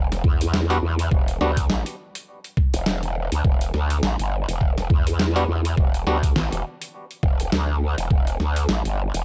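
A wobbling, growling bass with chorus and tube saturation opens this playful, gritty glitch hop piece in E minor at 103 BPM, alongside a barely audible electronic impact, as a thumpy, pitched-down electronic kick and a tape-warm boom bap sampler kit of hi-hat and medium-tuned snare, both set in small room ambience, drive a swung 4/4 groove, while a twangy, stringy clav through a combo amp, roughened by 12-bit sampler crunch with sidechain pumping and analog delay, stabs in at 0.7 and again at 5.4 seconds, all within a dry hardware recording with a digital ambience.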